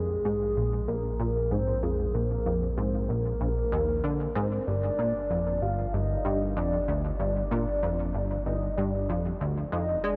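A straight 4/4 pulse carries this expansive, mysterious stretch of ambient, sequencer-driven space music, where a punchy, ring-modulated plucky analog bass riff sits up front with chorus and delay over a deep, sustained round analog bass, while a soft octave-layered synth lead, dark and wave-folded with vibrato, chorus and delay, sings its melody through a huge ambient reverb.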